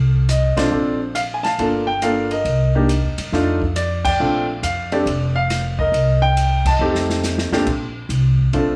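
Light studio reverb surrounds this swinging, relaxed jazz piano trio fragment, with a smooth, vintage concert grand carrying the melody up front over a woody, thumpy pizzicato upright bass on gut strings. An airy, polished acoustic drum kit in a small room, with dark cymbals, a medium-tuned snare and a boomy kick, sits further back, joining the band on a few accents and taking a fill at 6.8 seconds. The grand then takes a solo from 7.7 seconds as the passage settles onto a rich major chord.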